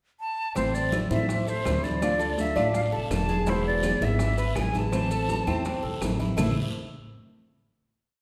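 An airy flute opens the piece alone with a short pickup, then at 0.6 seconds the full band of Cuban son and guajira falls in at a brisk 165 BPM in A harmonic minor, carrying a sultry, nostalgic mood. The flute sits up front with vibrato and a soft attack, spinning an expressive, motif-based melody of call phrases, while the growly, woody upright bass, also up front, plays a pizzicato tumbao that anticipates each chord. Between them, a bright, fingerpicked nylon-string guitar strums with muted slaps, and a metallic Cuban tres with doubled strings picks an arpeggiated guajeo over a simple progression from Am through Dm and E back to Am. In the background, thick-skinned congas with slaps and open strokes, round low-tuned bongos in steady eighths with hand bell, a raspy guiro and grainy maracas keep the groove moving, and very quiet, close claves tap a two-bar time line from 0.9 seconds. The whole band is heard from further back in a reverberant recital hall, and the flute drops out at 6.0 seconds before the ensemble rings out on a final A5 chord.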